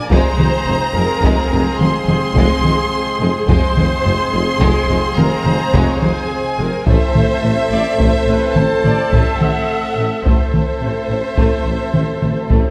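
Cinematic, epic orchestral film score in a heroic mood at 71 BPM in 12/8, cut from a longer piece, where a lush, expressive violin section carries the melody over a smooth second violin line, soft-attacked violas with portamento, clear woodwind and dark, distant French horn chords, a bass of double basses, very quiet cellos and a present tuba, and close, heavy-stick taiko drums standing out loudest, all in a moderate scoring-stage reverb as the harmony moves from Fm to Am at 6.9 seconds.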